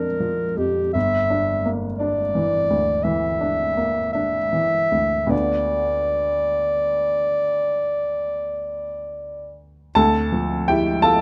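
This impressionist classical duo for clarinet and baby grand piano, cut from a longer piece, moves in a slow, rubato 12/8 at roughly 49-58 BPM on the dotted quarter, and its mood is mysterious and hazy. The dark clarinet carries the melody between G4 and E5 in a present, classical-style solo voice, placed up front. The warm baby grand piano accompanies over a range from G1 to A5, with an intimate, natural tone, short sustain and audible action noise that brings the listener close to the instrument. In D minor, the harmony drifts through Bb69 and Gm6 to Dm6, settling on Dmadd9 at 10.0 seconds. The clarinet falls silent at 9.6 seconds, leaving the piano alone until 11.2 seconds, with light reverb softening the intimate sound.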